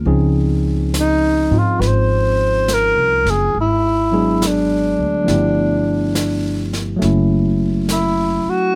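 This smoky and wistful jazz piece moves at 69 BPM in 4/4 with a swung eighth-note feel, and it is cut from a longer piece. A barky, clean tine electric piano and a pizzicato upright bass open together, the bass sitting up front with a woody, dark, growly steel-string tone. A brush kit enters at 0.1 seconds, lower in the mix, its medium-tuned snare and hi-hat sounding airy and polished in a small room. At 1.0 seconds a breathy alto saxophone takes the solo melody as the loudest part, with subtone, soft attacks, scooped notes and a smooth, whispered top that feels intimate. The harmony moves from Dbmaj9 through Abm7b5 and G13 to Gbm7, captured by close, detailed microphones with little reverb.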